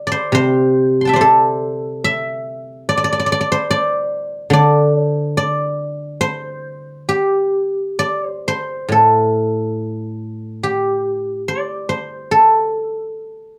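A silvery, ringing guzheng, plucked with fingerpicks and placed up front, carries this pastoral, serene piece of Chinese traditional music alone from the first moment to its close at 13.6 seconds. Its mellow acoustic tone spans from A2 up to C6, moving in a free, rubato flow over a 4/4 frame, with light reverb around it. The music shifts into a new section at 8.9 seconds, and the recording is cut from a longer piece.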